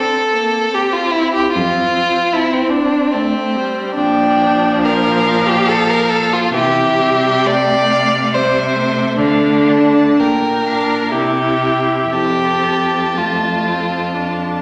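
Two bowed violins and a viola open together in this tender, rubato slow movement for string quartet in triple time, cut from a longer classical piece. The first violin carries the high melody with a rich, smooth and even tone and vibrato from a distant position, while the second violin's focused line sits up front beneath it, and the viola adds expressive accompaniment with vibrato and portamento. A clear cello enters on the bass at 1.6 s, and the quartet is heard in a wet recital hall reverb.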